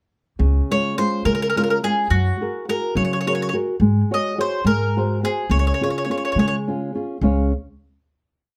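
A small, moderately reverberant room holds this short, sunny and romantic Italian folk serenade in a straight 6/8. Up front, a warm, double-strung mandolin picks song-like motif phrases from 0.7 to 6.5 seconds, while a dark, thumb-plucked flamenco guitar lays down an oompah of bass notes and chord figures and a thumpy, gut-strung upright bass plays pizzicato roots and fifths on the main beats. The brief piece moves from Db through a Gbadd9 and a suspended-to-dominant Ab7, resolves to Db at 5.5 seconds, and ends on a final chord from 7.2 seconds.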